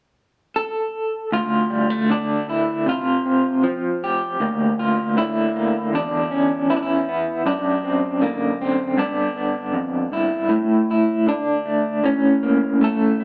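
Folk in D minor at 78 BPM in a straight 4/4, wistful and intimate, carried by a single electric guitar through a small old amp that enters at 0.6 s, its picked tone slightly broken-up, compressed and lo-fi, with tremolo, and sitting up front. The progression moves from Dm through Csus4, Gm6/D, E5, D7/F# and G, coming to rest on Asus4 and then A at 12.0 s. A moderate large-studio reverb and a dark, warm production give the piece an intimate atmosphere, and it is cut from a longer piece.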